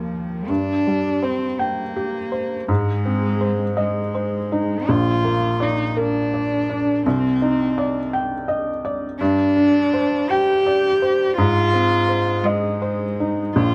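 In a slow, rubato 6/8 at 55 dotted-quarter beats per minute, this short neoclassical excerpt for piano and strings unfolds with a melancholic, longing mood, moving through chords from Gsus4 to Ab, Bb and Cmadd9 before circling back. A felt-muted upright piano carries the accompaniment across its full 13.7 seconds, its tone soft, mellow and intimate, while a single bowed cello plays a second line in a dark, sul tasto voice with vibrato, a gentle attack and a smooth top. Both sit up front in a close, detailed, nearly dry recording tuned slightly low, to A4 = 435 Hz.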